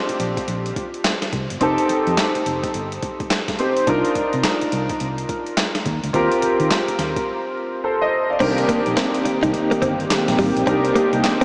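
Drenched in a huge, dreamy reverb with a small-speaker sound, this bouncy, slick new jack swing excerpt in C dorian at 106 BPM swings its sixteenths over a gritty, thumpy boom bap sampler kit with handclaps and crash, a dark, foam-muted fingered bass and an intimate, chorused grand piano with audible action noise, pausing for a break at 7.3 seconds before a shimmering pulse-width pad and a clean, direct-recorded electric guitar riff in the background join at 8.4 seconds on a Cm7 chord.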